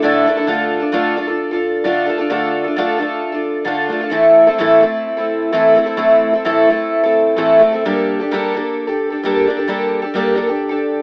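A picked twelve-string acoustic guitar plays alone, its bright, shimmering octave-doubled strings sitting up front in this reflective, wistful rock excerpt. The chords move from Asus4 to Dm, then to Am at 4.2 seconds and Gmadd9 at 7.8 seconds, all in a straight 4/4 feel. Light reverb surrounds the guitar, and the rough home-demo mix has the sound of AM radio.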